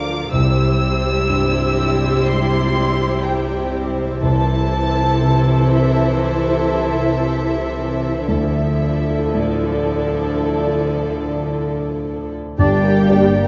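Up front, a concert grand piano with deep bass anchors this sorrowful, moving cinematic film-score excerpt in D minor at a rubato 54-62 BPM, as a distant, woody violin section sings the melody with vibrato over a pure, floating second violin line, a lush viola section and a soft-attack cello section, until at 12.6 s, on a Gm chord, a mellow French horn section, an airy flute section, a roomy oboe, a dark clarinet and a very quiet double bass section join briefly within a moderate scoring-stage reverb.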